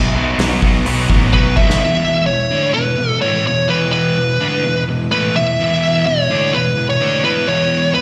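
A lush, vintage string machine holds sustained chords in the background while a sludgy distorted guitar grinds out an overdriven riff up front, joined at the start by a bright, picked distorted guitar and a growling, overdriven bass. This is anthemic, restless quiet-loud alternative rock in E major at 127 BPM in a straight 4/4, cut from a longer piece. A loose indie drum kit comes in at 0.4 seconds with a punchy kick, a medium-tuned snare and hi-hat, sounding rolled-off on top in a pumping room, and it plays a fill from 1.3 seconds as a fuzz lead guitar enters with a compressed, distorted melody up front, carrying slapback echo and digital delay. The bass drops out at 1.7 seconds, and at 1.8 seconds the harmony moves from Badd9 to E as the drums and bright guitar stop, leaving the sludgy riff, the chorused string chords and the fuzz lead to carry on together. Slapback echo colours all three guitars, and the whole sounds like a live gig heard through the venue's PA, wrapped in recital hall reverb.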